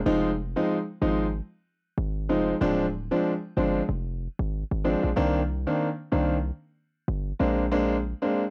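Recorded at home on cassette with a light reverb, this short cut from a longer afrobeats piece has a sultry, smooth mood at 94 BPM in C minor, with a swung sixteenth-note feel and tuning a touch under standard pitch. A brilliant, vintage-toned concert grand piano sits up front as accompaniment, its bright voicings moving through Fm7, Dm7b5, Cm9 and Bb9. Beneath it, a hard-hitting 808-style bass gives punchy, heavy sine notes with a noise layer, a fast attack and a decaying tail.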